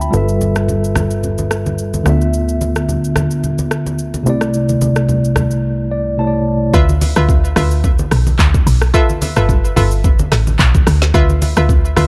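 This amapiano clip moves at 109 BPM in 4/4 with a lightly swung sixteenth feel in D dorian, setting a late-night, hypnotic mood through a dark, warm, dry production. A clean tine electric piano sits up front with chords such as G13, Dm69 and C69, while a punchy, nasal analog bass plucks funky low notes beneath it. An electronic afro-pop kit with a deep kick, woody snare, metallic hats, handclaps, rim click and shaker drives the groove, and bright, low-tuned acoustic congas with a thin skin sit in the background of a small room. The electric piano plays a fill over a silent gap at 5.6 seconds before the drop at 6.7 seconds, where a percussive FM log drum bass takes over the low end, mellow yet up front with a fast attack and a noise layer. Alongside it, a hollow, bouncy square-wave pluck with detuning, a filter sweep, chorus and digital delay adds bright stabs over the Dm69 and G13 changes.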